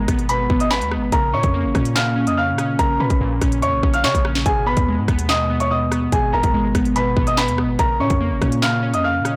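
A dark, intimate baby grand piano leads this menacing drill excerpt from its first moment, carrying the melody high in its register with audible action noise, short sustain, a low-pass filter and digital delay. Beneath it, and also from the start, glassy digital keys with a chorus effect, a low-pass filter and a filter sweep supply the accompaniment, while a hard-hitting 808-style bass adds a punchy, heavy sine tone with a noise layer and a fast, decaying attack. The drill drum kit arrives at 0.1 seconds, an electronic, produced kit of hard-clipped kick, sharp snare, crisp hi-hats, rim clicks and handclaps, placed up front in a half-time feel at 144 BPM in 4/4. The harmony is a tense Bb Phrygian shuttle between Abm and Bbm across a single section lasting about 9.4 seconds. Light reverb surrounds the parts, and the overall sound is blown-out and overdriven.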